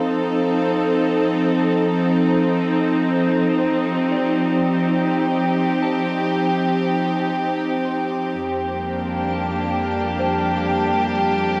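At 70 BPM in a straight 3/4, this weightless, peaceful ambient piece in F mixolydian, cut from a longer work, rests on an intimate chamber string section up front, bowed sul tasto with light vibrato, holding sustained chords that move from F7 to Gm/F, softened by a low-pass filter and shimmer reverb. A very quiet FM synth bell traces pure, warbling arpeggios with a touch of chorus throughout, and at 9.0 s a faint granular texture adds bright, twinkling octave-up sparkle. A filter sweep colours the strings from 8.4 s, and the whole recording sits in a huge 7.5-second reverb with a cassette-tape character.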